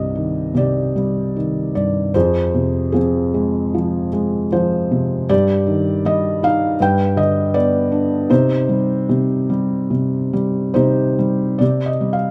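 This is a lyrical classical solo piano piece, melancholic and reflective, played with a flexible rubato feel in 4/4. A felt-muted upright piano carries everything alone from 0.0 to 12.3 seconds, spanning C2 to G5 with a soft, dark, intimate tone. The microphones sit close and capture fine detail, so the instrument feels up front and the mechanical action noise is audible beneath the smooth, vintage sound. The harmony moves from Cm to Fm, then through Ebmaj9/G and G before settling back on Cm at 8.3 seconds. A light reverb gives the close sound a little air, and the brief passage comes from a longer piece.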